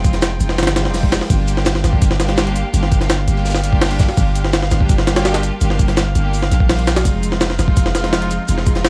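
A gritty, overdriven jungle sampler-style drum kit sits up front in this frenetic, dark drum and bass cut, its pitched-up, compressed hits pairing a thumpy kick with a high-tuned snare and hi-hat at 167 BPM in straight 4/4. Also up front, a long sustained 808-style bass holds deep, mellow sine notes between F1 and Bb1, each with a fast attack that then decays. A clear, lush studio string section plays bowed, sustained chords with vibrato, moving from Fm7 to Gm7 at 1.3 seconds and back to Fm7 at 7.0 seconds, all in G phrygian. In the background, a damped 70s acoustic kit adds dry, dark hi-hat, shaker and a fat snare with a rolled-off top, while a drifting glass-harmonics texture with chorus and its own reverb floats calmly around F5 to G5. A very quiet electronic swell appears briefly between 0.8 and 1.3 seconds, and a studio ambience of vinyl crackle sits over this short section cut from a longer piece.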